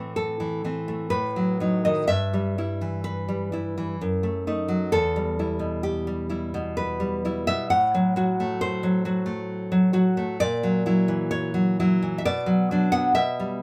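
In a moderate studio ambience, an up-front, deep-toned nylon-string guitar plays a melancholic, wistful romantic solo classical piece in E minor at 65 BPM in a rubato 3/4, its fingerpicked lines and audible finger squeak moving from Am through Em to settle on Bm at 12.2 seconds in this 13.6-second section cut from a longer work.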